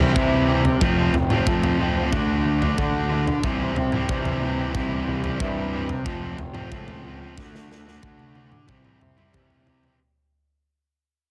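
Quiet-loud alternative rock at 92 BPM with a dark, cathartic mood: this fading clip, cut from a longer piece, sets a bright, up-front distorted guitar riff over a lo-fi, slightly broken-up arpeggiated guitar with phaser tucked in the background, a fuzzy overdriven picked bass, and a punchy big-room drum kit that enters at 0.2 s and plays a fill from 7.4 s, all moving through C, F and Dadd9 under light reverb and a heavily compressed radio sheen.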